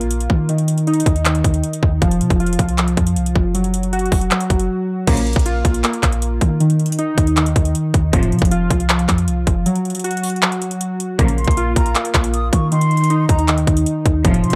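A half-time trap groove at 157 BPM drives this eerie, hard-hitting hip hop excerpt, with an overdriven, up-front drum kit of hard-clipped kick, metallic hi-hats, handclaps and crash beneath a deep, boomy 808-style sine bass. Warbling, detuned lo-fi synth keys with chorus, low-pass filtering and analog delay spin nostalgic arpeggios throughout, while from 5.1 seconds a distant, woody chamber string section adds brief dark bowed stabs. After a break at 9.7 seconds, a breathy, hollow silver concert flute enters at 11.4 seconds with a close-miked second line and its own analog delay, all set in a dry, gritty recording with transformer saturation.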